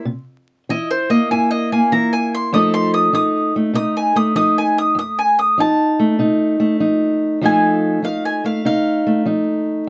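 A dark, crackling recording with wet booth ambience frames this short cut from a longer acoustic country blues, soulful and swaggering at 98 BPM with a swung feel in F mixolydian. Up front, a mellow, woody mandolin with doubled strings picks the melody throughout, stopping at 9.2 seconds. Beside it, a boxy fingerpicked parlour guitar supplies the accompaniment, moving from C7 to F7 and ringing on to 9.9 seconds.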